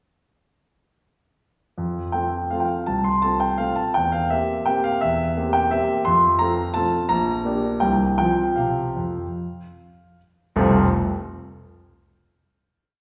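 A warm, open, up-front concert grand piano plays a graceful, sparkling classical waltz in F major alone, its single-line melody singing over a deep waltz bass in a flexible rubato 3/4 that moves between 146 and 182 BPM, slowing from 7.6 seconds before settling on a final F chord at 10.6 seconds, all set in the wet reverb of a recital hall.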